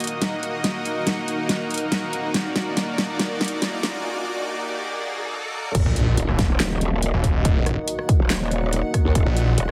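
The sound is squeezed and heavily compressed, like a radio broadcast, with a thin, high-passed edge and a touch of light reverb. This aggressive, chaotic excerpt of heavy wobble dubstep runs at 141 BPM in a half-time 4/4 feel, sitting on E-flat minor. A lush, airy supersaw pad holds sustained chords with sidechain pumping and a low-pass filter, while a cloudy, blurred granular pad drifts in the background with its own reverb and pumping. The dubstep kit, tape-warm and up front with a huge snare and metallic hats, plays a fill during the build-up as an electronic riser rises from 2.2 seconds, then the music breaks at 4.0 seconds. At the drop at 5.7 seconds, an impact hits, a punchy layered electronic kick enters, and a growling, wobbling bass with chorus and overdrive arrives. A snarling distorted saw bass joins it at 5.9 seconds, and both are fast-attacking and sit at the front of the mix.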